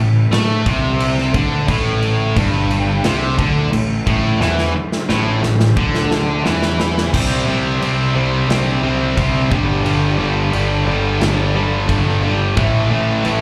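A straight 4/4 pulse at 88 BPM drives this menacing hard rock passage in A minor, cut from a longer piece and heard as a live gig through the venue's PA with club reverb. Up front, a fuzz-laden, warm picked electric bass anchors the low end, while three bright, overdriven guitars play a riff in the background, one of them double-tracked and carrying a slapback echo. Very quietly underneath, an overdriven tonewheel organ holds thick, gritty sustained chords colored by chorus vibrato and a slow rotary speaker. A big-room acoustic drum kit with a punchy kick, medium-tuned snare and crash cymbal comes in at 0.3 seconds and plays a fill from 4.4 seconds. At 7.1 seconds the harmony moves off the A minor chord into power chords on C, G and finally A, keeping the driving momentum to the end of the clip.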